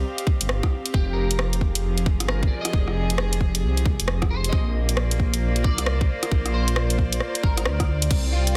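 A layered garage kit of crash, hi-hat and rim click opens this ghostly, nocturnal future garage excerpt at 0.2 seconds, joined a moment later at 0.3 seconds by a tight, overdriven electronic kick that sits up front, both kick and kit dressed in studio reverb, over a swung sixteenth-note feel. Beneath them a deep, rumbling detuned sawtooth bass beats and sustains with a fast attack, while a close chamber string section holds soft-attack sul tasto chords that seem to float, the strings, bass and guitar all pumping against the sidechain. A slightly broken-up picked electric guitar adds quiet accompaniment through ensemble chorus and analog delay, and the whole is pressed into a dense, heavily limited modern master as the harmony moves from Fm to Bb.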